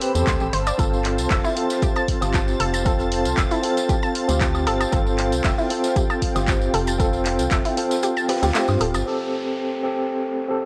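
An overdriven, gritty tine electric piano with fast tremolo, tape echo and a low-pass filter sits up front, playing stabs over Am7 and G9sus4 in this late-night deep house excerpt at 116 BPM. Beneath it are a deep, layered electronic kick that drops out at 8.0 seconds, a hollow, dark FM bass with a percussive, organ-like tone, and a dry, punchy analog drum machine with handclaps and filtered hi-hat, crash and woodblock. A very quiet acoustic jazz kit, a jingly tambourine, bright, nasal analog pluck arpeggios with chorus and tape echo, a smooth sawtooth pad and a silky string machine in the background fill out the groove, with the pad, piano, strings, bass and pluck all pumping from sidechain. A downlifter enters at 9.1 seconds, and the whole mix has a dry, gritty hardware sound with light reverb and transformer saturation.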